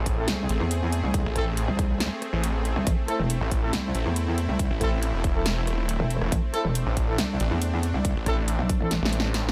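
Heavy wobble dubstep with a menacing, aggressive half-time feel, cut from a longer piece and sitting on an A minor chord throughout. Two basses sit up front: a snarling, distorted saw bass growls low with detuned unison sawtooth layers and a moving notch, while a metallic wobble bass with FM character, chorus and saturated overdrive enters at 0.3 seconds. Beneath them, a lush supersaw pad holds slow-attack chords with sidechain pumping, and a brass ensemble in classical style, smooth-topped with light vibrato, fires stabs from the background through dub echo. A punchy, layered electronic kick drives the groove alongside a dance kit of punchy snare, rim clicks and metallic hi-hats, set in a small room ambience. The mix is dry, and a drum fill closes the passage from 8.9 seconds.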